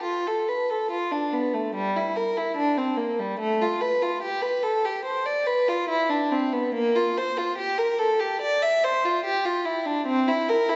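The recording is bathed in a wet concert-hall reverb with a 2.2-second decay, heard from further back in the room, and its top end is softened, reaching only to about 7.8 kHz. This short passage is cut from a longer piece, a serene, radiant classical movement in baroque style for unaccompanied violin. One player carries the whole part from 0.0 to 10.8 s, bowing up front with a reedy gut-string tone and light vibrato in period style, ranging from G3 to E5. The tempo sits around 72 BPM in 4/4, but the rubato lets the line breathe freely. Tuned to A4 = 439 Hz, the violin's rich voice glows against the long, resonant hall.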